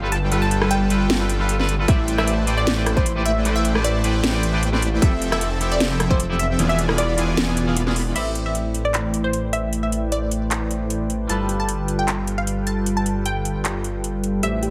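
Lightly reverberant and pumping with sidechain, this bittersweet, dreamy future bass clip sits in a half-time swing, with a mellow, full-bodied supersaw riff, a thick, chorused detuned saw bass and a lush, punchy unison pluck melody with delay over a bright, twangy electric guitar accompaniment, while an overdriven trap kit with a sharp snare, metallic hats, claps, rim clicks and crash runs throughout, a hard-clipped electronic kick hits up front from 1.9 to 6.2 seconds, and a round, tine-like thumb-piano-style pluck arpeggio arrives only at 14.4 seconds.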